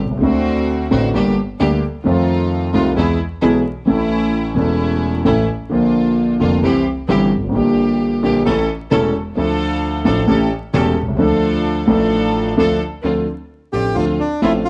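Tango with a dramatic, tense mood and a rubato feel, cut from a longer piece, where a dark, mellow concert grand piano carries the accompaniment up front from the start, its deep bass and audible action noise giving an intimate, vintage character. A string section with a gut-string, period-style tone adds bowed stabs alongside it, and a change of section near 13.0 seconds brings in a reedy, boxy bandoneon melody at 13.7 seconds, up front, just before the cut. Light reverb and vinyl crackle give the recording an aged sheen.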